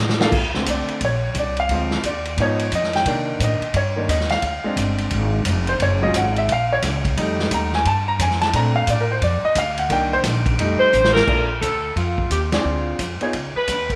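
A short drum fill kicks off this joyful big band swing excerpt at 175 BPM in Bb major, where a bright, intimate upright piano with audible action noise takes a solo from 0.3 seconds over a growly, woody pizzicato upright bass and a roomy kit with dark cymbals and a boomy kick, all in moderate spring reverb, until a clear, tight saxophone section with vibrato and slapback echo takes the melody at 10.8 seconds and the band lands an accent at 12.5 seconds.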